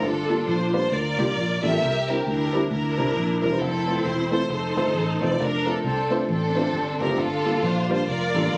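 A lightly swung eighth-note feel at 134 BPM in 4/4 drives this hopeful, reverent uptempo gospel excerpt, moving through Gm9, C9, Fmaj7 and Bbmaj9/F before returning to Gm9. Up front, a bowed studio string section carries the melody with expressive vibrato, portamento and a smooth top, its lines trailed by tape echo, while a worn, woody, slightly detuned upright piano accompanies until 8.4 seconds. Underneath, a fingered electric bass sits dark, round and foam-muted, with light reverb and a small, club-like room ambience giving the compressed, phone-captured sound its intimate character.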